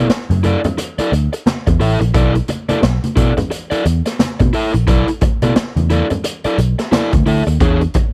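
A dry, close 1970s-style studio sound frames this hypnotic funk excerpt at 88 BPM in B dorian, where a crunchy overdriven guitar rides over a dark, round, foam-muted picked bass, a gritty, saturated garage drum kit with a high-tuned snare and punchy kick, and ringing low-tuned congas played with soft hands, all swinging on the 16ths across a Bm7 vamp that turns to E13 at 7.6 seconds.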